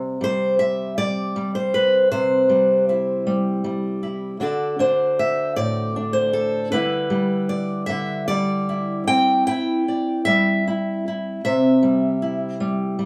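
A fingerpicked steel-string acoustic guitar plays alone from the very start, warm and up front, spanning A2 to G5 in an unhurried, rubato 6/8 at about 52 BPM in dotted quarters. This hopeful, peaceful folk excerpt moves from C to D7 at 4.4 seconds, then through G6/D and back home to C at 9.1 seconds. It sounds captured live in a small room, with moderate ambience around the guitar.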